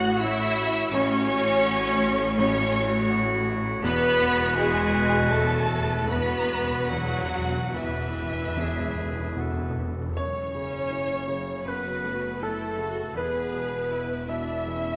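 This bittersweet, sorrowful film-score passage, cut from a longer piece, opens with a full orchestra at a rubato pace of roughly 71-83 BPM in 4/4. A lush violin section carries the expressive, vibrato-laden melody with a soft attack. Woodwinds weave second lines beneath it: a mellow, distant solo oboe, a pure and hollow flute ensemble with rolled-off highs, and a bright clarinet in the background that drops out at 10.2 s. A rich second violin section adds a further line. The harmony is filled out by a dark, vintage-toned grand piano, smooth, even violas and sustained chords from a French horn section with light vibrato. A very quiet, faraway cello section and a bowed double bass section with portamento anchor the low end, while close, calf-headed timpani played with medium mallets enter at 3.8 s and stop at 11.2 s. The harmony moves from F#m/A and Esus2 into a settled F# minor with F#m7 and E chords, and the whole scene sits in the generous reverb of a scoring stage.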